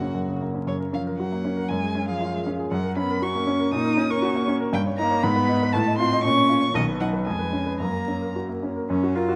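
A quick classical-period movement for piano trio in F# major, cut from a longer piece, moving at 118 BPM in 2/4 with a rubato feel and an urgent, dramatic mood. A rich, up-front violin carries the melody with expressive vibrato and portamento until 8.3 s, while a cello adds a soft-attacked second line with its own vibrato and sliding portamento, and a clear, present baby grand piano supplies the accompaniment through to 9.4 s. The close, detailed microphones sit within a moderate concert hall reverb, with a layer of vinyl crackle, as the harmony passes through chromatic bass steps before settling back on F# at 7.8 s.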